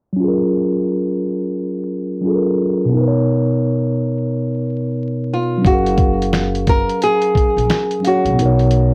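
Lo-fi hip hop recorded at home on cassette, with vinyl crackle, a low-pass filter and light reverb giving this excerpt a hazy, dreamy and nostalgic air. It moves at 88 BPM in 4/4 with a 60% swing on the 16ths, sits in F# major and is tuned to A4 = 444 Hz. A mellow, clean tine electric piano carries the accompaniment from 0.1 seconds, up front and heard through its built-in speakers with a tape tint, cycling between F#maj7 and Bmaj7 while a filter sweep runs over the opening stretch. At 5.3 seconds a bright, small-sounding fingerpicked nylon-string guitar takes the melody, close up and touched with plate reverb and cassette tape. From 5.6 seconds a gritty, compressed sampler-style drum kit enters up front with a thumpy kick, a fat snare, hi-hat and finger snaps. Just after, a woody, dark pizzicato upright bass with steel strings settles underneath in its low register.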